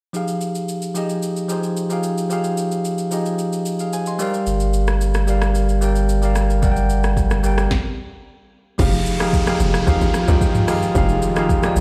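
Late-night and hypnotic, this amapiano excerpt at 111 BPM in F dorian rides on a bright, bell-like tine electric piano and an overdriven electronic R&B drum kit with a soft kick, sharp snare, hi-hat, rim click, shaker, toms and crash, while a deep, thick triangle sub bass sits up front from 4.5 seconds until a stop at 7.7, before the drop at 8.8 seconds adds a hollow, bouncy log drum bass, a very quiet, warbling, detuned sawtooth unison pad with chorus, and an electronic downlifter, all in a dry mix carrying a faint stone-room ambience.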